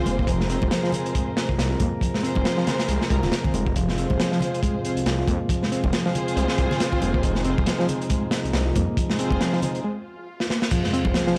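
Funky and raw, this breakbeat excerpt drives along at 138 BPM in F minor, with a 16th-note swing giving the breaks a loose, human push over a steady F minor chord. Up front, a crunchy, saturated drum kit with a tight kick, medium-tuned snare and dark cymbals sets the groove, while bright, damped congas sit dry and close in the background. A thick, beating detuned saw bass growls menacingly beneath a reedy electric piano riff, lightly overdriven with fast tremolo and tape echo. A tonewheel organ holds clean sustained chords through a stopped rotary speaker, roughened by 12-bit sampler grit and sidechain pumping, as a dark string section adds expressive bowed stabs with vibrato and portamento. A break opens at 9.8 seconds, where an electronic swell rises under a drum fill before an impact with a sub drop lands at 10.7 seconds, all captured as a dry, gritty hardware recording with light reverb.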